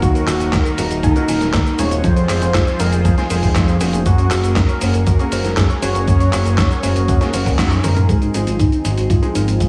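Playful and danceable, this italo disco excerpt moves at 119 BPM in a straight 4/4, with a thumpy, gritty electronic kick and a dusty soul sampler-style kit of cabasa, handclaps, hi-hat, snare and toms driving a fat, saturated analog bass through Ebm, Fm and Gbadd9 before landing on Ab at 8.1 seconds. A thick, bold unison lead carries the melody with vibrato, cassette tape colour and tape echo, while a smooth chorused analog pad sustains chords in the background, a soft, round pluck plays quiet arpeggios, and a clear, worn baby grand piano adds short stabs until 9.5 seconds. A drum fill from 7.6 to 8.1 seconds, with a band accent at 7.6, marks the change, and the whole mix sits in a heavily compressed radio sound with small room ambience, light reverb and digital ambience.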